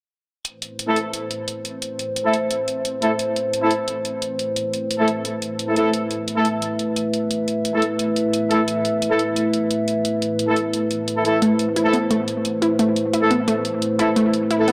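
The straight 4/4 pulse at 175 BPM drives this aggressive, dark technical drum and bass excerpt in A minor, where bright layered electronic hi-hats tick over a deep, detuned analog pad holding an Am chord with subtle chorus, tight up-front brass ensemble stabs pass through a low-pass filter and dub echo, and a punchy, warbling unison pluck arpeggio with dub echo enters at 11.4 seconds, all set in a lush 1.7-second hall reverb.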